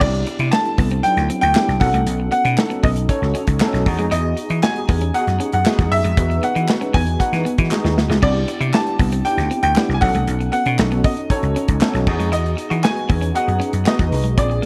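A straight, upbeat 4/4 groove from a dark, tight-kicked studio drum kit and a growly, punchy slap bass drives this urban excerpt of polished 1980s jazz-funk pop, where a clear, short-sustained baby grand piano carries the melody over a worn, slightly out-of-tune tine electric piano with ensemble chorus, a compressed, picked electric guitar riff with lush chorus sits in the background alongside crisp group handclaps from 0.5 s, a drum fill arrives at 7.7 s, and the bright digital production adds plate reverb and vinyl crackle.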